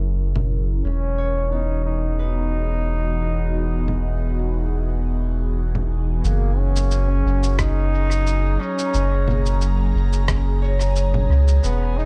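Ambient dub, peaceful and hazy, cut from a longer piece, where an airy, breathy pad with chorus and phaser holds sustained chords over a deep, round sub bass up front, muffled, tape-warm congas, cabasa and rim click echo from 0.4 seconds, a clear, distant trombone sings a classical-style solo line and a ringing, fingerpicked harp arpeggiates in the background from 0.8 seconds, both steeped in dub echo, with filter sweeps on the pad and harp through the opening 6.2 seconds and a thumpy, pitched-down kick drum arriving at 7.6 seconds in a dry, echo-heavy mix.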